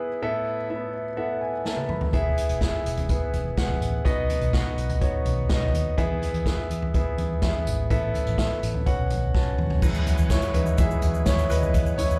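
Heard as a live gig through the venue's PA with club reverb, this anthemic, uplifting piano-driven pop excerpt opens on an intimate concert grand with slapback echo, audible action noise and long sustain. The piano plays a fill before a roomy acoustic drum kit with dark cymbals and bundle sticks enters at 1.7 seconds, followed by a round, foam-muted electric bass, as the chords move through Asus2, E and B. At 9.8 seconds the piano takes a solo over Eadd9 while a very quiet, mellow French horn section enters, joined in the background by a lightly overdriven tonewheel organ with key click and fast rotary speaker and a grainy tube shaker.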